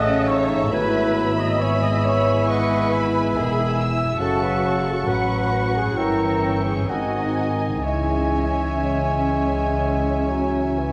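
The recording has a dark, warm production set in a wet concert hall, its long reverb wrapping a full symphony orchestra in a solemn, yearning slow romantic movement, cut from a longer piece and played with rubato in 4/4. A lush, distant violin section carries the melody high above, while a second, closer violin section, a bright oboe, a clear clarinet and an airy flute ensemble weave secondary lines, several of them set in the background. Beneath them a roomy bassoon and a focused viola section fill out the accompaniment, a tight French horn section holds sustained chords, and a shadowed trumpet section adds stabs from behind. Woody cellos and an intimate, up-front double bass section anchor the bass, and a ringing, fingerpicked concert harp spins very quiet arpeggios across a broad range. The harmony drifts from A through F#m and a diminished chord at 6.0 seconds before G#7 resolves to C#m at 7.8 seconds, with every part sounding through the full 10.9 seconds.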